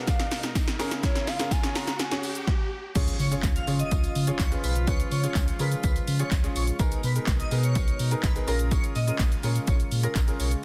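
A dense, heavily limited modern master with digital ambience carries this driving, bittersweet dance-pop excerpt at 125 BPM, where a punchy, overdriven analog drum machine, a faint jingly tambourine, a warm, intimate grand piano and soft-attack brass chords with sidechain pumping support a hollow, woody clarinet-like synth lead with dub echo over a background riser, until the drop at 3.0 s brings an electronic impact, a deep sine sub bass with octave and an airy, dreamy lead with phaser, both pumping with sidechain.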